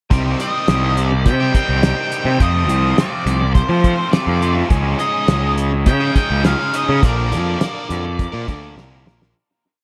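A small, echo-heavy room gives this short psychedelic rock piece a dark, mysterious haze at 104 BPM in a straight 4/4, moving through Cm, F6, Dbsus2 and Bb before fading out from 7.0 seconds. Up front, cloth-damped drums with a fat snare, tight kick and rolled-off top carry tape echo and a big rock groove, joined by a round, punchy fuzz bass playing a syncopated riff, while a bright, double-tracked overdriven guitar strums its riff through phaser and tape echo. An octave-fuzz lead guitar enters at 0.4 seconds with a dark, distorted motif-based melody, a very quiet tonewheel organ holds sustained chords with key click and a slow rotary speaker, and a drum fill closes the piece at 8.8 seconds.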